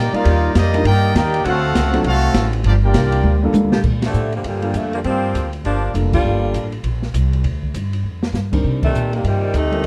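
This is big band swing in G minor at a brisk 200 BPM, a dramatic, brassy fragment cut from a longer piece. A bright trumpet section carries the melody with light vibrato and a soft attack, and a loose trombone section moves beneath on a second line. Under them, a very quiet saxophone section holds sustained chords with a smooth top. The brass drop out at 3.4 seconds, partway through a drum fill, and at 4.1 seconds a clear, up-front saxophone section takes over the melody, punctuated by band accents. Underneath, a woody pizzicato upright bass sits forward, a vintage grand piano offers long-sustaining accompaniment, and an open jazz drum kit with dark cymbals, a boomy kick and a rolled-off top plays in a small room. The chords pass through Ebmaj7, D7#9 and Gm7, and the close, detailed recording carries light reverb and a faint mains hum.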